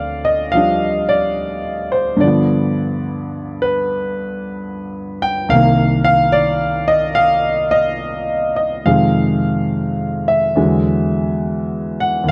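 Solo jazz at a relaxed 71 BPM in 4/4, this brief swinging excerpt features a single up-front grand piano with a smooth, vintage tone, played with a loose rubato feel across a range from C2 to G5, moving through Dm7, G7, Cm7, Fm7 and E9 under light reverb in a dark, warm production.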